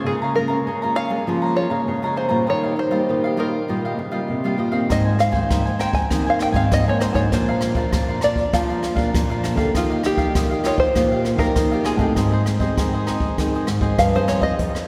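A straight four-beat samba and choro groove carries this nostalgic, bittersweet passage, cut from a longer piece, with a twangy, plunky fingerpicked open-back banjo taking the melody over a crisp, mellow cavaquinho and a thumb-plucked classical nylon-string guitar. A second, deep fingerpicked nylon-string guitar holds the bass line, and at 4.9 s a brushed jazz kit arrives up front with a boomy kick, hi-hat and rim clicks. The whole ensemble sits in the long, wet reverb of a church or concert hall, which lends the acoustic strings a spacious, reflective glow.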